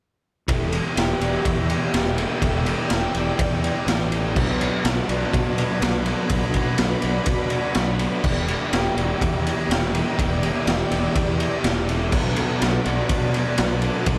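From 0.5 seconds a gritty, up-front garage drum kit with punchy kick, crash, ride and snare drives a brooding, melancholic shoegaze and dream pop groove at 124 BPM in E minor, together with a round fuzz bass, a crunchy overdriven guitar riff with lush chorus in the background, a bright double-tracked overdriven guitar, a faint twangy clean guitar, shimmering fingerpicked twelve-string arpeggios and a very quiet vintage string machine holding sawtooth chords over Em7 and Bm7, all soaked in a huge, dreamy reverb until the cut at 14.2 seconds.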